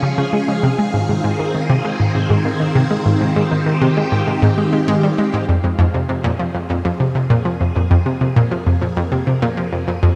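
A bright, up-front analog pluck drives this cosmic, expansive piece of sequencer-driven space music, its round, detuned sawtooth riff sitting low between F2 and Ab3 and trailed by chorus and delay. Beside it, a phased string machine holds sustained chords in a swirling, vintage tone, its ensemble chorus and phaser melting into shimmer reverb. High above, a twinkling granular texture adds sparkling, octave-up shimmer in the background until 5.5 s, while a filter sweep moves across the synth arpeggio sound over the same stretch. At that point the harmony moves from Db and Ab to F minor, and at 6.5 s a very quiet, mellow analog drone enters on F2 with a warbling, wave-folded character. Set at 99 BPM in a straight 4/4 in Ab major, this cut from a longer piece sits in a dreamy mix soaked in plate reverb with a cassette-tape character.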